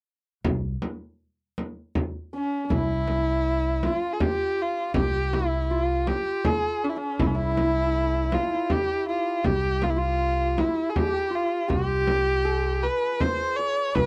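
This excerpt moves in a stately 3/4 at 80 BPM with a straight feel, as a deep, compressed frame drum and a woody, thumpy pizzicato upright bass on gut strings, holding C2, sit up front from the opening moments. The piece is a festive Persian modal ensemble work in C dastgah chahargah, tuned to A4 = 438 Hz. Around 2.3 seconds a hammered santur enters in the background with a shimmering, ringing second line, and the bowed kamancheh takes the melody an instant later, clear and focused with vibrato and portamento. The single-player kamancheh sits close and up front, in front of the santur. The sound is a dry, close 1970s-style studio recording with little reverb, and it is cut from a longer piece.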